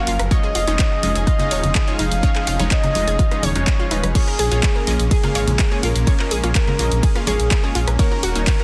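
An expressive, smooth synth lead carries the melody from the first moment of this euphoric, expansive progressive house excerpt, shadowed by a very quiet, pure FM bell, while a lush supersaw pad holds sustained chords and a round analog pluck spins arpeggios with chorus and digital delay. A bright unison pluck adds phased stabs, and at 0.1 s a deep, rumbling detuned saw bass enters up front alongside a layered house kit with claps, hats and ride, followed at 0.3 s by a punchy electronic kick. Ringing woodblock and congas sit in the background, the pad, plucks, bass and percussion pump with sidechain compression, and the harmony moves from C#add9 to A#m7 at 4.2 s in a dense, heavily limited modern mix with light reverb.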